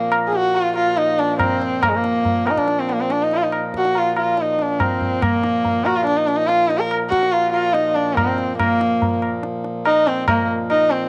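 A bowed sarangi and a harmonium drone begin together in this serene, meditative Hindustani classical passage, cut from a longer piece, with the tabla joining at 0.1 seconds. Set in Bb major at 142 BPM in a straight 4/4, the music sits close and up front on the sarangi, a single player whose woody, gliding line moves between Ab3 and Bb4 with light vibrato, soft attacks and portamento, while sympathetic strings ring beneath the bow. Underneath, the pedal harmonium holds a warm, reedy, breathing drone between Bb2 and F3, airy and kept well back in the balance. The low-tuned tabla has a ringing acoustic tone, heard close and dry. A light reverb and small-room ambience frame the performance, which stays in one unbroken section through to 11.1 seconds.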